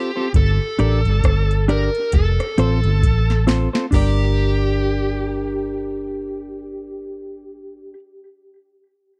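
A dark, smooth lead guitar with overdrive and tape echo opens this excerpt of serious, meditative roots reggae, sharing the first moment with a clean, picked, compressed electric guitar accompaniment that carries its own tape echo. At a slow 67 BPM in 4/4 with a gentle swing on the sixteenths, the music sits in G minor, moving from Gm to F and back to Gm at 3.9 seconds. A vintage muted fingered electric bass enters at 0.3 seconds, round, foam-muted and punchy, placed up front in the mix alongside a soft vintage analog rhythm box with a deep kick, crisp snare, metallic hats, rim clicks and a crash, all given a gritty overdrive and a large-room character. The drum machine plays a fill from 3.0 to 3.9 seconds and stops at 4.2, leaving the guitars and bass to carry the second half. The sound is dry and close, in the manner of a 1970s studio recording with little reverb.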